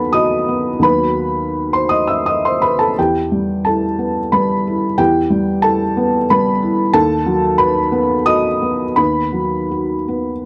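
A dry, close, vintage-sounding studio recording captures a felt-muted upright piano playing solo, its soft, dark, intimate tone sitting up front through a melancholic, wistful fragment of neoclassical minimalist music in 3/4 at a rubato 81-93 BPM in E harmonic minor, tuned to A4 = 439 Hz, moving from B/D# to Em at 3.0 s and back to B/D# at 6.9 s across a range from D#2 to E6.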